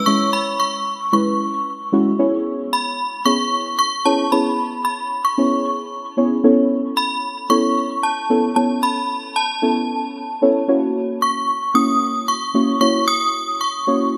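This pop excerpt opens on a ringing, inharmonic FM synth chime that carries the melody up front in a high register, its fast-attack notes decaying into a long release through ensemble chorus, phaser and dub echo. Beneath it, a deep, mellow chord stab provides the accompaniment from 0.1 seconds, a dark, wave-folded blend of triangle, sawtooth and sine tones with a quick attack and chorus, also placed close to the listener. The mood is energetic and driving at 113 BPM in a straight 4/4, set in C# minor. The harmony moves from an opening E6 to C#m7 at 2.2 seconds, then through Aadd9 and F#7. A light reverb and digital ambience frame the two parts, which play together until the cut at 14.2 seconds.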